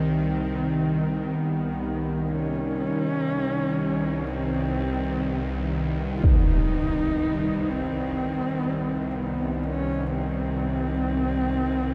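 A nasal, detuned, bowed-like drone and a husky, woody horsehead fiddle open this desolate, ominous dark ambient fragment in free time, the fiddle carrying a vibrato-laden melody with portamento through a diffuse ambient delay. Alongside them, a deep, full-bodied analog pad with chorus holds sustained chords in the background and fades out, while the tense, evolving drone sits up front with its own built-in reverb. At 6.2 seconds a huge, low-pass-filtered impact strikes, all within a cavernous, dark wash of reverb.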